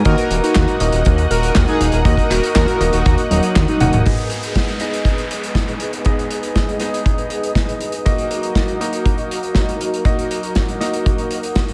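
Set in light studio ambience, this bittersweet, danceable italo disco fragment in G# minor runs at 120 BPM in a straight 4/4, with a punchy up-front kick and a loose acoustic indie kit of handclaps, hi-hat, snare and toms in gated reverb driving bright, clangy electric grand piano stabs with delay and lush, mellow string-machine chords with ensemble chorus, while a thick, saturated analog bass and a bold, brassy synth brass melody carrying chorus, delay and 12-bit grit drop out at 4.0 seconds after a drum fill. The drums and piano stabs carry on with the strings, which move under a filter sweep, joined by an electronic downlifter from 4.1 to 8.1 seconds.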